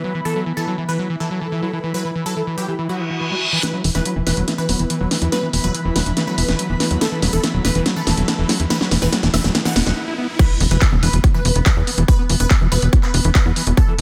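Psychedelic trance at 142 BPM in a straight 4/4, intense and driving, this excerpt opens on an E5 chord with a squelchy, gritty overdriven acid bass riff under filter sweep, distortion and delay, alongside a detuned supersaw stab melody, carried through a phaser and digital delay, and a very quiet pulsing gated texture of bright, tempo-synced chords. An airy, breathy pad with chorus and phaser sits in the background until 10.0 seconds, and like the stab and acid bass it carries sidechain pumping. From 3.0 seconds a reverse cymbal leads into a build-up at 3.6 seconds, where the techno drum kit arrives up front with a cracking snare, handclaps, hats and crash, joined by a tight, ring-modulated sequencer bass with a fast filter pluck, while a very quiet formant-sweep wobble bass surfaces briefly. A swell and a short break set up the drop at 10.4 seconds, where a punchy electronic kick lands up front with an impact. 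The mix sits in light reverb, with the drums re-recorded in rooms for a layered, produced character.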